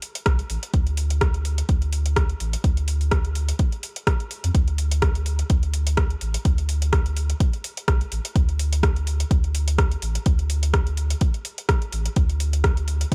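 Dub techno in a hypnotic, meditative mood, this short excerpt rides a swung 4/4 groove built on an electronic kick drum, deep and up front, and a deep house drum kit whose metallic hats and rim click sit farther back with a tape-warm, layered character and small room ambience. From 0.3 seconds a soft dub sub bass enters together with the kick, its round, sustained tone moving between A1 and F2 and pumping against the sidechain. A digital ambience surrounds the parts.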